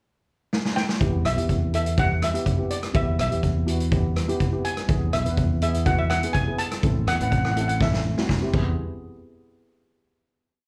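A drum fill on a street-band kit opens this short, bittersweet calypso at 0.5 seconds, with a boomy kick, medium-tuned snare, rim clicks, hi-hat and crash sitting up front with a rolled-off top. At 1.0 seconds the verse settles into a straight 124 BPM calypso groove in E minor. A pair of steel pans (double seconds) carries the music: one, struck with hard rubber sticks, plays a bright, shimmering, motif-based melody in song-like phrases, while the other, played with medium rubber sticks, supplies mellow, dark, smooth syncopated triads underneath, both coloured by plate reverb and slapback echo. A fingered electric bass adds a growly, punchy syncopated figure, direct and amped, as the harmony moves from E minor through E major and A minor before returning to E. After a second drum fill, everything converges on a final hit at 8.8 seconds, with the moody performance heard as a live gig through the venue's PA in a lightly reverberant club.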